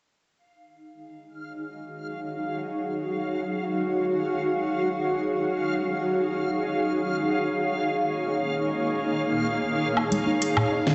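IDM in free time and Eb minor, this eerie, intricate excerpt opens with a reversed, bright granular texture on a high F5 at 1.0 s, joined by an up-front, cloudy, detuned granular pad holding Ebm9 then Bbm7 chords beneath a filter sweep, before an overdriven organic electronic kit with woody snare, smooth hats and woodblock arrives at 10.0 s alongside warbling, lo-fi, chorused pluck arpeggios, all set in a plate reverb and a stone room whose sound is dull and muffled at the top.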